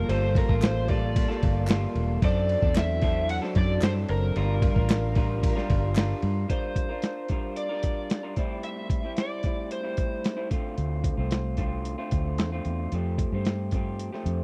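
The sound is dry and close, like a 1970s-style studio take with little reverb, giving this hazy, lonely slice of indie bedroom pop an intimate feel. At 112 BPM in a straight 4/4 and G dorian, a compressed, pitched-down sampler-style drum kit sits up front with a thumpy kick, medium-tuned snare, hi-hat and ride. Beside it, a round, foam-muted fingered bass drops out at 6.4 seconds and returns at 10.8. An overdriven slide guitar, played with fingerpicks and coated in lush chorus and slapback echo, carries the melody until 10.5 seconds, while a slightly broken-up electric guitar through a small old amp fills in beneath with subtle chorus and a warbly pitch drift. A very quiet, mellow organ-string ensemble holds soft-attack chords in the opening stretch, and a crisp, saturated group handclap adds percussion there too. The harmony moves from Gm9 and D7 to Gm7, then shifts through Am7 and Dm7 toward Fadd9.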